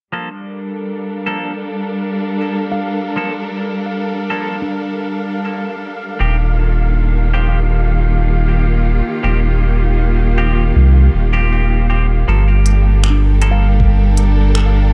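A straight 4/4 pulse at 79 BPM carries this spacious, meditative ambient dub fragment in G minor, moving from Gm9 to Eb69 and back to Gm9. Lush bowed strings hold sustained chords roughened by vintage 12-bit sampler grit, while twangy clean electric guitar stabs drip with spring reverb and dub echo. An airy, wind-like noise layer breathes in the background, a ringing handpan plays arpeggios under a filter sweep, a round, up-front sub bass with tube saturation arrives at 6.2 seconds, crisp, overdriven finger snaps and hi-hat join at 12.7 seconds, and a muffled, thumpy kick lands at 13.8 seconds in an echo-heavy mix.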